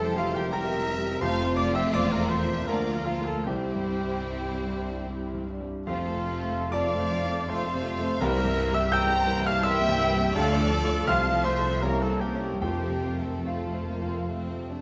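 This lush, lyrical romantic classical excerpt for piano and orchestra moves in a rubato 3/4 at 68-88 BPM in F major, tuned to A4 = 436 Hz. A clear, intimate grand piano sits up front carrying the melody, its action noise audible, alongside a vibrato-rich violin section with a smooth top. A second violin section, an airy flute ensemble, a mellow oboe and a warm clarinet form the quiet second lines, while violas accompany, a dark trumpet adds stabs in the background, and cellos and double basses hold the bass. Distant trombones and French horns sustain chords from 1.2 to 12.9 seconds, hard-malleted timpani mark the opening and close, and a moderate scoring-stage reverb lends the whole a roomy glow.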